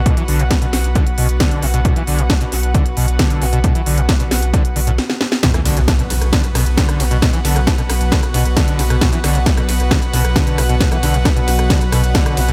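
Driving peak-time techno at 134 BPM in B minor, this intense cut from a longer piece sets a punchy, tape-warm kick and a layered kit of cracking snare, smooth hats, ride and rim click with dub echo against a thick, saturated sub bass and a rich, earthy chamber string section, both breathing with sidechain pumping. A squelchy, screaming sawtooth acid riff with resonant filter sweeps, distortion, lush chorus and tape echo cuts through the echo-heavy mix, until a drum fill and stop at 5.0 seconds give way to a drop at 5.4 seconds marked by a very quiet electronic impact. A very quiet, moody detuned pad drone enters at 7.1 seconds beneath the drive.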